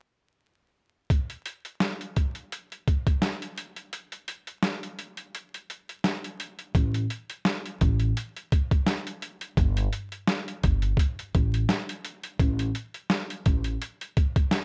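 Dark and moody, this boom-bap hip-hop excerpt rides a swung 85 BPM groove from a gritty, pitched-down sampler kit of thumpy kick, medium-tuned snare and hi-hat, all over a bed of vinyl crackle. After a break from 3.9 to 6.7 seconds, a woody, growly pizzicato upright bass enters low at 6.8 seconds, sitting up front beside the compressed drums.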